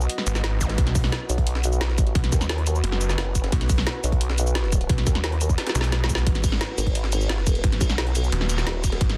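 A straight 4/4 pulse at 175 BPM drives this dark, aggressive technical drum and bass excerpt. A tight, up-front electronic kick sits over a layered kit with a woody snare, metallic hats, cabasa and ride, while a very quiet, gritty breakbeat sampler kit adds a high-tuned snare, and a drum fill arrives at 5.6 seconds, joined by an electronic swell at 5.7 seconds. Two up-front basses dominate: a snarling, distorted sawtooth bass with a moving notch and sidechain pumping, and a nasal, resonant vowel-sweep wobble bass with chorus. Behind them, a deep, moody pad with chorus, built-in reverb and sidechain pumping sits in the background, moving between G#m and B in a dense, heavily limited, futuristic mix.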